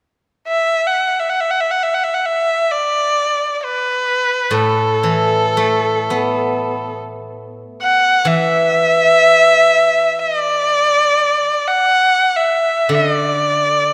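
A rich, smooth erhu carries the melody in free time from 0.5 seconds, its single bowed voice sitting up front with light vibrato and gliding portamento in a pastoral, festive piece of Chinese traditional chamber music in D gong mode. At 4.5 seconds a bright steel-string zither joins in accompaniment, its fingerpicked, silvery notes ringing low beneath the erhu. A moderate concert hall reverb surrounds both players in this short passage cut from a longer work.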